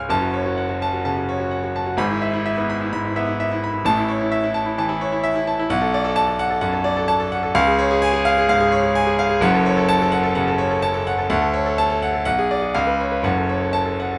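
The rhythm moves in a flexible rubato over a four-beat metre, pushing and pulling against the pulse in the manner of a virtuoso piano study. This classical fragment, cut from a longer piece, carries an agitated, stormy mood in a minor key. A lone grand piano plays throughout, from 0.0 to 14.2 seconds, with a clear, natural tone set up front. Its writing spans a broad compass, from F#1 in the deep bass up to E#6. The harmony moves restlessly through a chain of chords before a tightening cadence near the close settles back on the home minor chord at 13.2 seconds. Close, detailed microphones catch the instrument with only a light touch of reverb, giving the sound an intimate presence.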